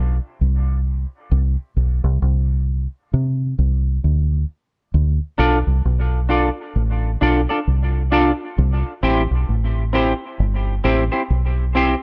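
An echo-heavy mix with light reverb and lossy compression artefacts frames this deep, heavy dub reggae excerpt at 66 BPM in 4/4, with a 16th-note swing and a D dorian colour tuned to A4 = 443 Hz. A dark, round, foam-muted fingered electric bass opens alone in an up-front break. A bright, clean, picked semi-hollow electric guitar steeped in analog chorus and dub echo joins at 5.4 seconds over the chords Dm and then C.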